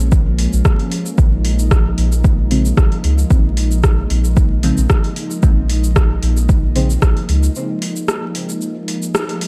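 A swung 4/4 groove at 113 BPM drives this cavernous, meditative dub techno excerpt in Bb minor: an overdriven, up-front electronic kick sits under a layered deep house kit of metallic hi-hats, rim clicks and shaker, both sounding re-recorded in a large room. A round, soft sub bass with tube saturation and an airy, breathy pad holding a Bbm7 chord with chorus both pump against the sidechain, while a dark, detuned chord stab enters at 2.5 seconds, its filter sweep and moving notch joined by phaser and dub echo. The bass drops out at 7.5 seconds as a break carries the piece to a band accent at 9.1 seconds, the whole mix carrying a dry, gritty hardware character with vinyl crackle.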